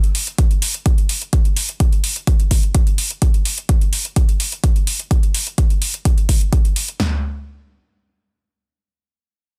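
Expansive and bittersweet, this progressive house excerpt at 127 BPM in straight 4/4 opens with up-front metallic electronic hi-hats at 0.0 s, overdriven and pumping with sidechain in a small room, joined at 0.4 s by a layered deep house drum kit whose deep kick, punchy snare and toms carry grit and a touch of room before the section shifts at 7.0 s, all within a dense, heavily limited modern master.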